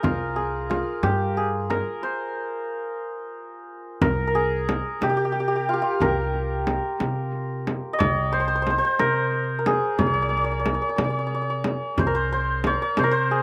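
A bright, shimmering santur leads this longing, soulful Persian modal piece in a straight 6/8, its hammered, ringing melody sitting up front with a slapback echo. Beneath it, a woody pizzicato upright bass on steel strings and a frame drum played with soft hands carry the pulse. After a stop between 2.0 and 4.0 seconds, a new section unfolds in a dry outdoor setting, with the drum dropping out at 13.1 seconds as this fragment of a longer piece ends.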